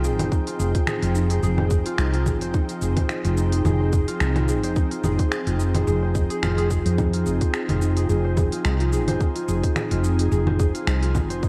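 This organic downtempo excerpt opens on an airy, ethereal pad holding a sustained Fm7 chord, its detuned sawtooth tone softened by ensemble chorus, built-in reverb and sidechain pumping, while a concert harp rings out thumb-plucked arpeggios through a digital delay. Underneath, a woody fretless electric bass sits up front with a round, hollow-body character, thickened by tube saturation and lush chorus and shaped by sidechain pumping. A tight electronic kick drum joins at 0.3 seconds, and an organic electronic kit of cabasa, congas, finger snaps and smooth hi-hats sways with a light swing in 4/4. The mood is warm and hypnotic, staying on a single chord throughout this brief fragment of a longer piece. A moderate, lush hall reverb and a dark production wrap the parts into a soft, enveloping space.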